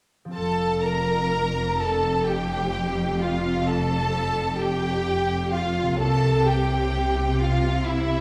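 A close, expressive violin section carries the melody with vibrato and portamento over a smooth second violin line in the background, focused violas, rich, lush cellos and woody double basses, while a ringing, fingerpicked concert harp, entering at 0.2 s, plays arpeggios in the background of this tender, slow romantic orchestral excerpt in F major at 43 BPM in a rubato 12/8, which moves from F to C7b9 at 6.0 s within the reverb of a recital hall.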